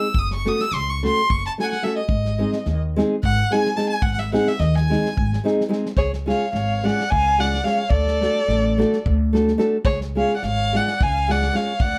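Balkan folk in the spirit of a wedding band, this restless, fiery cut from a longer piece drives along at 216 BPM in an odd-metered 7/8, set in G# phrygian dominant. A rich, distant violin carries a smooth, even second line with vibrato from the opening, heard solo over the band for the first 6.0 seconds while a fingerpicked nylon-string guitar plays accompaniment up front, its deep classical tone marked by finger squeaks. A growly pizzicato upright bass with steel strings anchors the low end, and an acoustic drum kit of kick and medium-tuned snare adds a tight, smooth pulse. At 6.0 seconds a dark, woody violin steps forward with the melody, bowed with vibrato and a smooth top, as the harmony moves from F#m and G# toward C# and D. A moderate small-room reverb gives the ensemble an intimate, close-knit sound.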